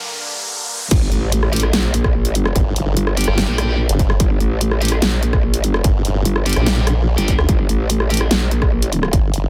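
Heavy wobble dubstep in G minor at 146 BPM with a half-time feel, this aggressive, menacing cut from a longer piece opens on a lush, detuned unison pad sustaining a G minor chord under a riser, sidechain pumping its thick, warbling body until the drop hits at 0.9 seconds with an impact. There a growling, saturated bass pushes up front alongside a distorted, tape-warm electronic kick and a layered dubstep kit of crash, hi-hat, rim click and a huge, softly clipped snare, and from 1.5 seconds a bright, double-tracked high-gain guitar fires delayed stabs. From 2.6 seconds a second, sawtooth-edged wobble bass with a sweeping formant filter joins the low end, all sealed in a dense, heavily limited modern master.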